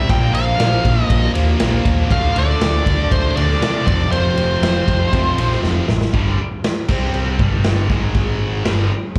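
Hard rock at 119 BPM in G minor, menacing and aggressive, heard live through a club PA: a bluesy, distorted lead guitar with slapback echo and analog delay sings up front over a very quiet detuned sawtooth pad, three picked rhythm guitars grind out a riff in the background (one high-gain, one crunchy, one double-tracked with phaser), a growly overdriven bass punches beneath, and a gritty, saturated garage drum kit with a punchy kick drives everything, firing a fill at 5.6 seconds before the lead and pad drop out by 6.1 seconds and the band moves through power chords to the cut.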